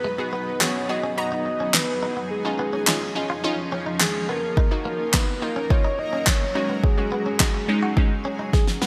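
Bright, glossy 1980s-style digital production with a moderate plate reverb frames this short, energetic dance-pop excerpt, moving at a driving 106 BPM in straight 4/4 and set in G# dorian. A round, octave-layered synth lead carries the melody between G#4 and D#5, its dark tone touched with chorus, delay and vibrato, while a shimmering, ethereal pad holds sustained chords underneath with a slow attack, granular texture and a pumping sidechain motion. A crystalline wavetable pluck enters at 0.2 seconds with detuned unison, phaser and a filter sweep, its fast, decaying notes also pumping against the beat. Tucked in the background, a clean, twangy electric guitar recorded direct plays a compressed, picked riff through lush chorus. The deep house drum kit arrives at 0.6 seconds, up front with a deep kick, fat snare and handclaps, overdriven and bathed in gated reverb, and closes with a fill from 8.5 seconds over a progression of G#m7, C#add9, D#m and F#sus2.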